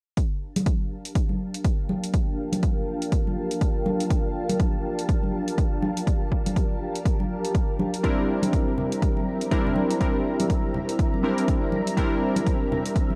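A swung 4/4 groove at 122 BPM drives this smooth, deep house excerpt in G dorian, anchored by a punchy, layered electronic kick that sits up front with overdrive, and a quieter, analog-tinged hi-hat carrying its own overdrive. Bright congas played with soft hands add a small-room acoustic touch to the rhythm. Silky, vintage string machine chords hold a Gm9 under a filter sweep, colored by phaser, ensemble chorus, 12-bit sampler grit and sidechain pumping. From 1.9 s, a dark, moody pad of detuned sawtooth with a sine sub octave lingers in the background, softened by chorus, built-in reverb and its own pumping. At 8.0 s the harmony moves to C7 as round, full-bodied analog keys enter up front with fast-attack, decaying sawtooth stabs, treated with chorus, tape echo and sidechain pumping. The whole mix carries a cassette tape character with light reverb and digital ambience, giving it a warm, lived-in finish.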